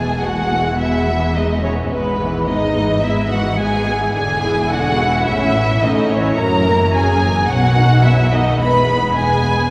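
At a quick 108 BPM in 4/4, this graceful, cheerful classical-period movement for string orchestra moves with a flexible, rubato feel in E major, heard as a short cut from a longer piece. The violins carry the melody up front with a soft attack and expressive vibrato, their smooth top sitting over a second violin line that sounds focused and lush beneath them. Violas fill in the accompaniment with a close, expressive tone, while a rich cello section stays in the background and the double basses anchor the low end with soft-attack, expressive bowing. All five sections play together from 0.0 to 9.7 s, tracing a harmonic path from E through E7, A, F#7 and B before settling back on E at 8.6 s. A wet cathedral reverb with a long 4.8-second tail surrounds the ensemble, giving the church or concert-hall recording a spacious, glowing atmosphere.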